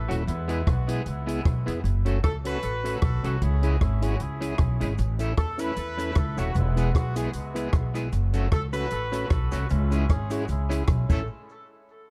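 A clear, punchy horn section with vibrato carries the melody through analog delay over a woody pizzicato upright bass, opening this cheerful, bouncy ska cut from a longer piece at 153 BPM in A major, with a light swing. A twangy electric guitar at the edge of break-up adds tremolo-laced accompaniment, a clean tonewheel organ supplies stabs through a slow rotary speaker, and a dry compact cocktail drum kit with a punchy kick, rim clicks and dark cymbals sits up front as the chords cycle through E, F#m, C#m and A. At 5.0 seconds a very quiet, grainy cabasa joins, all within a dark, warm studio sound.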